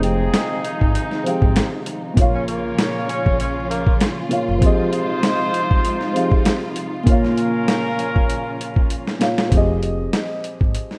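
Boom-bap hip hop excerpt in F minor at 98 BPM with a moody, tough feel, built on a gritty, pitched-down sampler drum kit with a thumpy kick and high-tuned snare sitting up front, under vinyl crackle, light reverb and a rough home-demo mix. A dark, vintage baby grand piano with audible action noise and a cassette-tape tint carries the Fm7 and Bbm changes, alongside lush bowed symphonic strings holding sustained chords and a loose, distant horn section punching stabs through tape echo. A breathy, whispered tenor saxophone with scooped notes and subtone plays the melody until 4.0 s, while a woody pizzicato upright bass drops out at 4.6 s and returns at 9.5 s after a drum fill.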